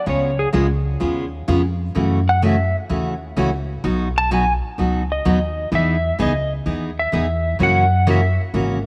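A dark, compressed lap steel guitar carries the slide melody with volume swells up front in this cheerful, playful western swing excerpt, backed by a full-bodied picked dreadnought acoustic guitar and a woody, thumpy pizzicato upright bass in light small-room reverb.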